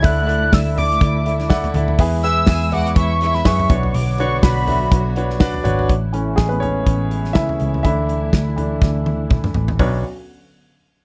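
This dry, close recording has a 1970s studio feel, with little reverb around the players. It is piano-driven pop in B dorian at 123 BPM, with a light swing on the sixteenths and an earnest, bittersweet mood, cut from a longer piece. A velvety synth lead with chorus and vibrato carries the melody high up until 5.4 seconds, over a present, polished grand piano, a round, foam-muted picked electric bass and a loose indie drum kit whose tight kick and rolled-off top sit up front. Dark, woody strings hold lush sustained chords in the background, and a clear violin section adds a brief second line between 2.2 and 3.7 seconds. From 5.9 seconds the piano takes a solo over chords moving from A to Dsus2, and a drum fill leads toward the return of Bmadd9.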